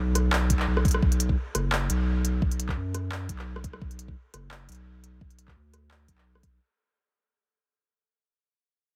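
Heavy and tense, this short cut from a longer half-time drum and bass track moves at 172 BPM in B minor, with a light swing on the sixteenths giving the half-time groove a slight lilt. A saturated sub bass opens at the very start and carries the low end, a deep, thick sine tone with a fast attack and sustained notes that sits up front between F#1 and F#2. At 0.2 seconds an electronic drum kit joins with handclaps, crisp hats and rim clicks, its tape-tinged sound re-recorded in a small room. An electronic kick drum arrives at 0.5 seconds, adding a knocking thump. The mix is dry and heavily compressed, with a dense radio-style sheen, and the whole passage fades out across its length.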